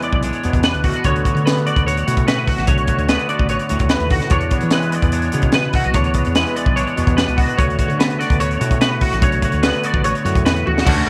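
Math rock with a midwest emo lean, this wistful, bright clip moves at 147 BPM in 4/4 in D lydian, with chords shifting between E9 and D6 over a twangy, clean fingered electric guitar and a woody, hollow-bodied fretless bass. Up front, a compressed twelve-string electric guitar spins bright picked arpeggios through ensemble chorus and tape echo, while a crisp fusion kit with a high-tuned snare, tight kick and pumping small-room sound drives along and drops a fill at 10.7 seconds. At 10.9 seconds a double-tracked overdriven guitar riff slips in from the background just as the clip ends, with light studio reverb around the whole mix.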